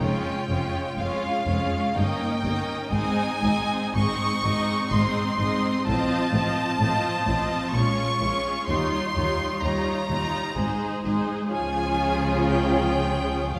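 A rich violin section sits up front with the tender, lyrical melody of this slow romantic string-orchestra movement in Ab major, moving at 62 BPM in a flexible, rubato 3/4, while a bright, focused second violin line, lush violas, soft-attacked cellos sliding with portamento in the background, and expressive double basses with their own portamento and warm vibrato fill out the harmony, the ensemble heard from further back in a reverberant recital hall in this passage cut from a longer piece.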